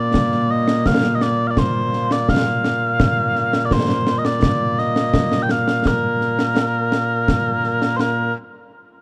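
Scottish traditional pipe music in a proud, stirring mood, this short cut from a longer piece moves at 84 BPM in a straight 3/4 and sits in Bb major. Mellow small bagpipes carry the melody from the very start, sounding sweet and continuous with vibrato, placed up front as the solo voice across a range from Bb2 to G5. Concert snare drum and concert bass drum join at 0.1 seconds, heard close and acoustic, with dark cymbals coloring the percussion. Light reverb surrounds the parts, and the production has a dark, warm character. Both parts play through to 8.3 seconds, shortly after the music passes into a new section at 8.0 seconds.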